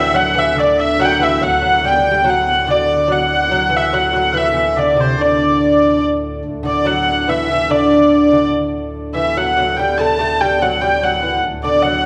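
A festive medieval dance in triple metre opens with every part sounding at once: a nasal, earthy hurdy-gurdy carries the melody up front, its airy bowed wheel tone and keyed notes giving the tune a warm, boxy character. Behind it, a bright shawm plays a folk-style second line with a light vibrato and a smooth top, sitting in the background until it drops out at 6.0 s. A delicate fingerpicked lute adds a lower second line on gut double strings, some of them octave-doubled, lending a warm, plucked acoustic tone. Beneath everything, a full pipe organ principal chorus holds a low drone with baroque voicing and a touch of chiff, grounding the ancient mood. The sound sits in a reverberant recital-hall space with a small-room ambience, and a second section begins at 6.4 s before this fragment of a longer piece ends at 12.1 s.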